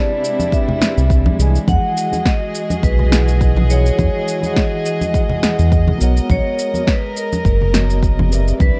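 Relaxed and blissful, this sunset chillout excerpt drifts along with a gentle swing in 4/4. A ringing, metallic vibraphone played with medium mallets and the motor off carries the melody, while a mellow tine electric piano supplies the accompaniment, both trailed by tape echo. Beneath them, a dark chamber string section holds soft-attack sustained chords, bowed sul tasto with light vibrato and a smooth top for an intimate, close feel. The electronic shaker and punchy snare come in at 0.2 seconds, close and dry acoustic congas at 0.4 seconds, and a deep, overdriven, up-front electronic kick at 0.5 seconds. A round analog bass blending sawtooth, sine and triangle tones, detuned and sustained with a fast attack, anchors the low end and sits prominently in the mix. Light reverb and small room ambience frame a dark, warm production, with the harmony moving through Cmaj9, Emaj9 and Bmaj9.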